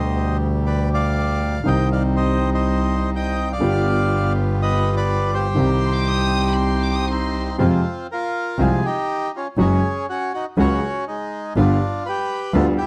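Tango in C harmonic minor at 121 BPM, this sultry, melancholic passage moves with a rubato feel and is cut from a longer piece. A reedy, up-front bandoneon carries the melody with a slapback echo, while a second bandoneon sits in the background with short stabs in a boxy small room. A grand piano with short sustain supplies the accompaniment, and a single bowed double bass anchors the low end with a clear, intense tone, light vibrato and a smooth top, placed up front. From 5.8 to 7.6 seconds a chamber violin section adds a high second line, bowed sul tasto with a soft attack and an intimate, close ensemble sound. The harmony circles around Cm and G7 before shifting at 7.6 seconds to Fm and a Gbsus2, all captured in a dry, close studio recording in a 1970s style with little reverb.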